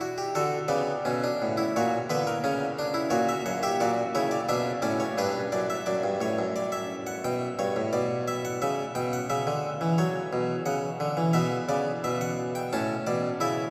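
Elegant and joyful, this baroque-style three-part fugue for solo harpsichord moves at a steady 88 BPM in 4/4 with a straight feel, in B minor, running from F#2 up to A5. The bright, plucked Italian-style instrument with its single set of strings sits up front, yet it is heard from further back within a soaking cathedral reverb that lingers for about 7.3 seconds. The opening phrase circles B minor and F# harmonies until 5.9 s, then the second passage turns through D, G and a diminished chord before returning to B minor and landing on A as this cut from a longer piece closes at 13.7 s.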